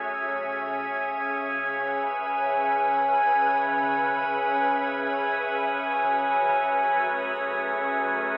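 A dreamy, reverb-soaked sound fills a cathedral-like space, its tail lingering for 5.3 seconds, while a narrow telephone quality colours the whole mix. This short ambient passage, cut from a longer piece, unfolds in free time with a spacious, melancholic mood, tuned to A4 = 438 Hz. A soft additive organ-like pad holds sustained chords from C#3 to E5 across the full 8.4 seconds, its pure, sine-based tone arriving with a slow attack and a long release, thickened by ensemble chorus and sitting bright and up front. Above it, a drifting glass-harmonics texture hovers between G#4 and G#5, glassy and calm, its overtones floating under chorus and built-in reverb. The harmony rests on C#m7 before shifting to F#m7 at 5.9 seconds.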